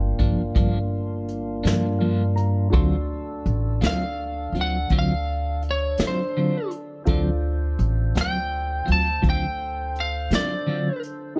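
In a straight 12/8 slow-blues groove, vintage brushed drums with a punchy kick and a woody pizzicato upright bass carry this smoky, brooding fragment, as a slightly broken-up lead guitar sings up front over a clean electric guitar shimmering with harmonic tremolo, a polished upright piano that slips in a fill at 1.6 seconds, and a fat tonewheel organ turning through a slow rotary speaker, while the harmony moves from Gm7 to D7#9 in a dark, dry production.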